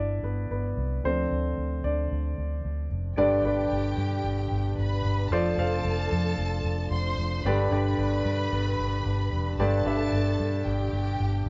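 A straight 4/4 pulse at 112 BPM drives this anthemic, hopeful piano-led pop excerpt in G mixolydian, moving between G and D minor chords. A dark, mellow concert grand with deep bass sits up front beside a round, punchy, foam-muted electric bass. At 3.2 seconds a lush, bowed violin section adds an expressive second line, while a clean, percussive tonewheel organ holds sustained chords through chorus vibrato and a fast rotary speaker, all set in a large studio reverb as if played live in one room with the top end rolled off.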